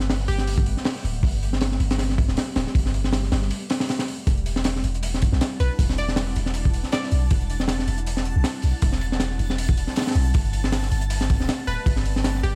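Drum and bass with a jungle lilt, raw and nostalgic, built on a punchy, saturated breakbeat kit with a high-tuned snare up front, beside a deep, sine-toned 808-style bass carrying tube saturation. An ethereal pad with ensemble chorus and 12-bit sampler grit hangs in the background, while a glassy, crystalline wavetable pluck with dub echo flickers in briefly. A short break arrives at 3.5 seconds, a very quiet, overdriven sampler-style kit joins at 4.3 seconds as the harmony moves from Gmaj9 to Em9, and from 5.5 seconds a reversed, dreamy granular texture swells high above, all framed by vinyl crackle and small-room ambience in this cut from a longer piece.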